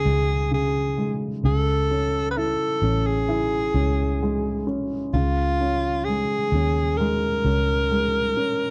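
A bright, vibrato-laden alto saxophone sings the melody up front from the start, with a touch of slapback echo, over a mellow, woody upright piano. A round, foam-muted electric bass joins at 0.1 s as the harmony moves from Db5 to Amaj7 at 1.4 s and Bbm7/Db at 5.1 s. This heartfelt, emotional slow pop fragment, at 65 BPM in a straight 4/4, has the dry, close sound of a 1970s-style studio with light reverb.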